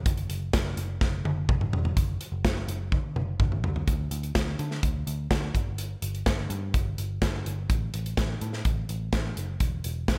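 Uplifting and anthemic, this short excerpt cut from a longer piece of piano-driven pop moves at 126 BPM in a straight 4/4, tuned slightly below standard pitch to A4 = 439 Hz. A modern studio drum kit, acoustic and up front in a studio room, drives the track with a punchy kick, a medium-tuned snare, hi-hat and toms. Beneath it, a vintage muted picked electric bass supplies a dark, round, foam-muted tone through an amp, ranging from E1 to D3. Both parts play from 0.1 seconds to the close at 10.2 seconds, with the drums sitting louder than the bass. Drum fills arrive at 1.0 and 2.9 seconds, marking the turns between the opening sections before the longest stretch settles in from 3.9 seconds, all set in a light reverb.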